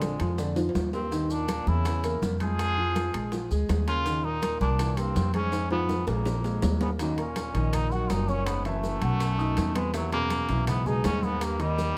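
Afro-Cuban jazz at 163 BPM in Eb minor, sophisticated and fiery, with a buzzy, brilliant metal-muted trombone carrying the melody over a smooth background baritone saxophone line, deep-voiced concert grand piano accompaniment, a woody, thumpy pizzicato upright bass up front, and a percussion bed of soft-handed congas, tight high-tuned bongos, ringing metal-shell timbales and grainy distant maracas, with drum fills at 0.6 and 5.5 seconds before the harmony turns toward Ebm7 at 7.0 seconds in this fragment of a longer piece.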